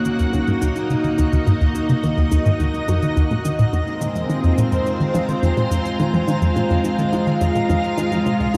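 Ambient, sequencer-driven space music with an expansive, cosmic mood, this excerpt sets lush, vintage string-machine chords up front, shifting from Ebm to Fm at 3.7 seconds under shimmer reverb, while a juicy, squelchy, resonant blip pluck riff with phaser and tape echo moves through a filter sweep, a twinkling granular texture fades in high in the background, and analog-sounding bongos and cabasa sit softly behind, all set in a dark concert-hall space.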